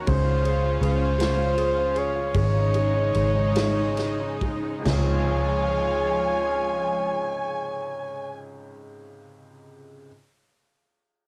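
A tape-worn home recording with audible compression artefacts and a small, close booth ambience frames this romantic, tender pop ballad in 6/8, moving at roughly 44-54 beats per dotted quarter in Db major and slowing through its opening 4.9 seconds. A brilliant, woody upright piano carries the accompaniment while a lush, detuned sawtooth pad with chorus holds slow-blooming sustained chords beneath it, and a dark, foam-muted fingered electric bass sits round and punchy up front. A smooth-topped flugelhorn with analog delay sings the solo melody in a narrow upper range, floating over chords that move from Dbmaj7 to Absus4 and back. A natural country drum kit with bright cymbals, a medium-tuned snare and a punchy kick plays quietly until 5.1 seconds. At 4.8 seconds a close, expressive violin section enters on a single high Ab with vibrato as a second line, adding bowed ensemble color to the short closing passage of this fragment from a longer piece.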